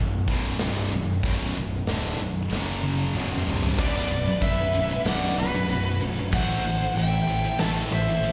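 Dark and aggressive, this 94 BPM heavy metal passage in B phrygian, cut from a longer piece and heard as a live gig through the venue's PA in a reverberant hall, opens with two bright, high-gain rhythm guitars riffing in the background (one carrying slapback echo) over a growly, fuzz-drenched fingered bass, while a big, natural-sounding drum kit with a punchy kick and bright cymbals joins up front at 0.3 seconds and plays a fill from 2.5 seconds before dropping into half time at 3.8 seconds, where a warm, high-gain lead guitar melody with slapback echo and delay takes the fore, shadowed by a quieter second lead line and a very quiet, lush bowed string section sustaining chords underneath.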